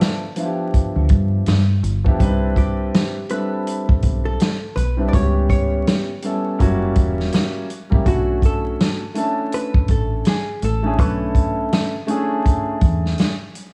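A cool, mellow jazz-hop excerpt at 82 BPM opens with a hollow-body jazz guitar carrying a clean, compressed melody with slapback echo, over a dark grand piano with long sustain and a vintage drum kit whose punchy kick and rolled-off top carry 12-bit sampler grit, all in a swung 4/4 feel. A deep dub fingered electric bass, round and foam-muted, enters at 1.0 s as the harmony moves from G13 through Cmaj9, C#m7b5 and F#7b9 to Bm11. Light reverb, vinyl crackle and studio ambience lend the sound a dusty, intimate glow.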